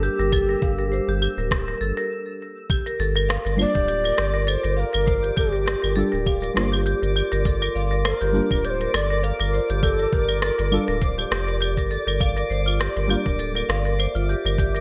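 This excerpt of organic downtempo in G dorian opens with a mellow, airy wooden flute in the Native American style, close-miked with audible chiff, tongued notes and expressive vibrato, its melody trailed by delay until it stops at 11.0 s. Beneath it sit a warbling, nostalgic tape-like pad in the background, dark marimba arpeggios struck with medium hard mallets and echoed by delay, and a round sine sub bass that pumps with the sidechain. An organic electronic kit of cabasa, claves, smooth hi-hat and rim click carries gated reverb over a lightly swung 101 BPM in 4/4, joined at 0.3 s by a gritty, thumpy, tape-warm sampler kick re-recorded in a large room. A twinkling granular texture adds FM sparkle with an octave-up shimmer high above. After a brief break, the harmony moves from Gm to Gm7 at 2.7 s, and at 3.6 s a deep, soft chord stab enters with vintage 12-bit sampler grit, a filter sweep, chorus and delay. 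The meditative, warm mood is framed by light reverb and bright 1980s-style digital production.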